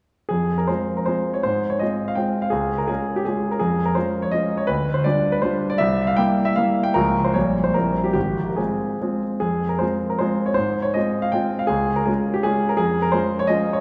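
Dotted rhythms drive this romantic triple-time dance in 3/4, played with a free, rubato feel that lets the tempo drift between 132 and 181 BPM. The mood is nostalgic and capricious, a short passage cut from a longer classical piece in F minor. A solo concert grand piano carries everything from 0.3 to 13.8 seconds, its sound warm and smooth with a deep bass and a vintage character, set up front in the listening space. The harmony moves from F minor through D-flat and a C7, touching a half-diminished chord before settling back toward F minor. The opening phrase returns at 9.4 seconds, restating its first chords from F minor to D-flat. A wet concert hall reverb with a long 2.2-second tail surrounds the instrument, giving the recording the spacious air of a church or concert hall.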